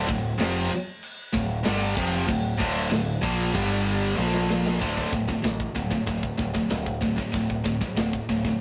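A high-gain guitar up front drives this aggressive, relentless heavy metal excerpt in D minor at 95 BPM, its bright, distorted riff joined by a second picked guitar set in the background, while a growling, overdriven electric bass sits beneath. A mid-forward acoustic kit with tight kick, medium-tuned snare, hi-hat and crash plays as the chords move from Dm through G5 and Bb5, then plays a fill from 4.2 to 4.8 seconds that leads into a new section on D5. The rough rehearsal-room sound carries saturation and light reverb.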